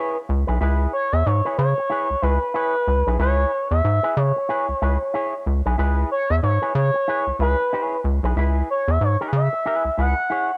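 The lightly reverberant sound of a home cassette recording frames this cool, sly funk fragment at 93 BPM with a swung 16th-note feel in C# minor, as a smooth sawtooth lead with vibrato and portamento glides up front over a dark, compressed electric guitar through an envelope filter and a rubbery, hollow square bass, all resting on a single C#m7 chord.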